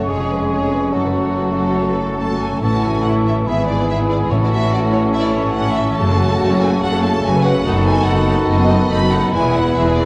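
A full symphony orchestra opens this spirited, dramatic romantic movement in flowing rubato, with a lush violin section singing the expressive, vibrato-laden melody over rich second violins, a dark clarinet, a distant cor anglais and a mellow, hollow silver flute, while violas and a bassoon fill out the accompaniment, a very quiet French horn section holds sustained chords, a ringing concert harp traces arpeggios, focused cellos and a clear double bass section anchor the bass, and round, soft-mallet timpani enter only from 2.6 to 4.9 s, the whole ensemble bathed in a moderate scoring-stage reverb within a dark, warm production.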